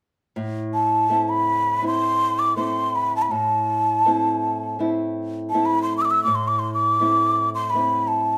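A breathy, hollow cane quena carries the melody up front from 0.7 seconds, its end-blown tone mellow and lifted in the highs, with tongued notes and vibrato singing high in its register. Beneath it, a small-sounding nylon-string guitar, fingerpicked and also placed close, begins at 0.4 seconds and holds an A minor accompaniment lower down. This is Andean folk in free time, with a wistful, earthy mood, played by an ensemble tuned slightly below standard pitch at A4 = 437 Hz. The players share one room with light reverb, giving the performance a live feel. The passage is cut from a longer piece and runs to 8.4 seconds, resting on a single A minor chord throughout.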